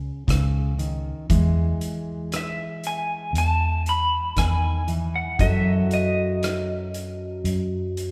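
A bright, twangy, slightly broken-up electric guitar through a small old amp carries the tremolo-laced melody up front in this intimate, heartbroken acoustic folk-pop ballad at 58 BPM, set over a full-bodied fingerpicked steel-string acoustic guitar, a dark, round, foam-muted electric bass and a distant, roomy indie drum kit with hi-hat, punchy kick and rim click that enters at 0.3 seconds, the chords moving from Badd9/C# to Emaj7 to F#m7 inside a wet concert-hall reverb in this short excerpt cut from a longer piece.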